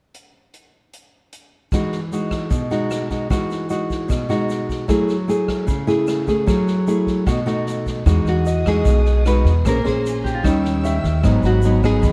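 Sophisticated and relaxed, this bossa nova excerpt in E major moves at 151 BPM, opening with a distant, roomy big-band drum kit of hi-hat, punchy kick, rim click and snare. A full-bodied, fingerpicked nylon-string guitar and a grainy tube shaker in the background join at 1.7 s over rich chords such as Emaj9 and F#m9. From 8.1 s an up-front, woody pizzicato upright bass and a clear, bowed string section with vibrato fill out the sound, while a second nylon-string guitar carries the melody with audible finger squeak, an intimate grand piano with action noise sits further back, and a bright, ringing concert harp adds a second line near the end, the whole production dark with light reverb.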